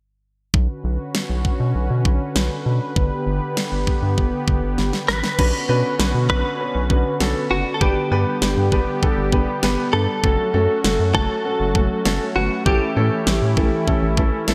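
A bright 1980s-style digital production with moderate plate reverb frames this melancholic, nocturnal synth-pop excerpt in B minor at 99 BPM: a smooth, detuned sawtooth pad with chorus and tremolo, a deep, round square-and-sine bass with a filter pluck, and an up-front electronic drum kit with a knocking kick and fat snare start at 0.5 seconds, a drum fill at 4.8 seconds ushers in a clean, compressed, direct-recorded electric guitar melody with analog chorus and delay at 5.1 seconds, and a natural-sounding baby grand piano with short sustain joins as accompaniment.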